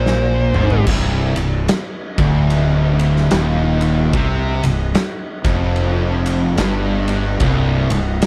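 Stoner and doom metal in C minor, brooding and heavy at a slow 74 BPM with a swung feel, cut from a longer piece. An oversized, low-tuned acoustic drum kit with a boomy kick, dark cymbals and a pumping big-room sound opens with a fill from 0.1 s, while a dark, compressed fuzz lead guitar sounds a brief C5 with slapback echo before stopping at 0.8 s. From the start, two thick fuzz guitars (one in the background, one very quiet) and a bright, double-tracked tight distorted guitar drive low riffs under a growly, overdriven fingered bass that sits up front beside the saturated, gritty drums. From 0.9 s the band settles on C minor, all in a dry sound.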